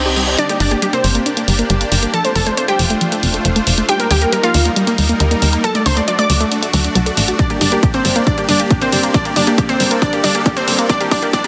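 Uplifting trance at 137 BPM in G minor, euphoric and emotional, this build-up opens on a reverse cymbal alongside a gritty, detuned unison pluck melody and a tight, nasal sequencer bass that drive over a lush supersaw pad, a tape-coloured pluck arpeggio under a filter sweep, a brilliant grand piano line with audible action noise set in the background and dry analog hi-hats, all pumping under sidechain through a hall reverb. A punchy layered kick arrives with a drum fill at 7.4 seconds, and a riser swells near the end as the chords move from Gm through F6, Eb and D, back to Gm and on toward Cmadd9.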